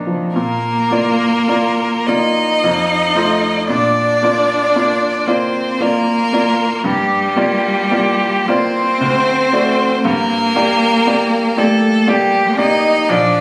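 In a rubato, slow three-beat lilt, this classical piano trio movement unfolds with a yearning, solemn romantic character, and the passage is cut from a longer piece. A bright baby grand piano opens the accompaniment with a brilliant, open sound, while a single bowed cello carries a close, smooth second line with an even vibrato. The violin enters at 0.4 s to take the melody, one player sitting up front with a rich, smooth vibrato. The harmony turns toward minor colour at 6.8 s before settling on a minor chord at 10.0 s. The sound is heard as if captured on a phone in the room, with club reverb, compression and a moderate stage reverb lending the trio a roomy, slightly boxed-in bloom.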